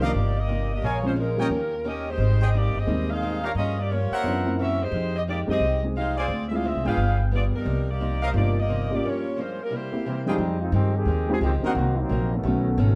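Swinging and sultry, this big band swing fragment sets a bright, vibrato-laden saxophone section on the melody over a woody pizzicato upright bass up front, a boxy picked ladder-braced acoustic guitar and an intimate grand piano with audible action noise, while a clear, tight trumpet section adds stabs until 11.7 s, and after a break at 9.0 s a brilliant trombone section takes a solo from 10.4 s, the whole set in a dark production with moderate large-studio reverb.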